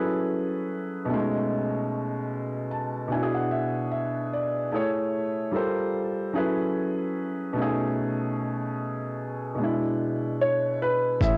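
A soft cassette-tape sheen and a modest small-room ambience frame this dreamy, mellow lo-fi hip hop excerpt, cut from a longer piece and moving at a relaxed 74 BPM in 4/4 with a gentle swing on the sixteenths. A felt-muted upright piano carries the accompaniment throughout, its hushed, intimate tone sitting up front with a touch of plate reverb as it drifts through jazzy chords such as F#m11, B13, E7/B, Amaj7 and Gm11. From 2.3 seconds it adds a short fill, and at 10.4 seconds a second upright piano, woody and close, enters with a brief melody in its middle register. At 11.2 seconds a fat, detuned sawtooth bass arrives with a saturated filter pluck, alongside a pitched-down, muffled electronic kick and shaker that carry a thumpy, compressed, gritty sampler character.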